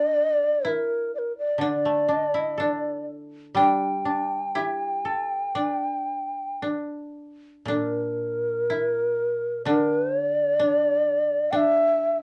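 In a free, rubato 4/4 around 55-66 BPM, this solitary, austere fragment of Japanese traditional chamber music sets a breathy, mellow shakuhachi up front with soft-attacked, vibrato-laden melody over a dry, woody koto second line, joined at 1.6 seconds by a second fingerpicked koto accompaniment, all heard in a small room through worn, warbling cassette tape with its pitch drifting.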